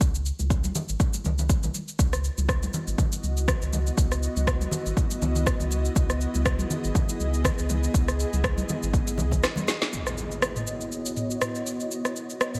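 Afro house at 121 BPM in C# minor with a swung sixteenth feel, earthy and warm, opening on a C#m11 chord as a deep, round sine sub bass with sidechain pumping sits under an overdriven, layered electronic kick and an up-front afro-pop kit of cabasa, rim click, woody snare and toms, while bright, thin-skinned acoustic congas add texture. An ethereal, airy pad of detuned sawtooth and triangle voices with a sub octave, ensemble chorus and long release enters at 2.5 seconds with a slow attack and also pumps with the sidechain. A drum fill at 9.4 seconds leads into an electronic impact at 9.9 seconds as a filter sweep moves across the pad, all within a light digital ambience in this short cut from a longer piece.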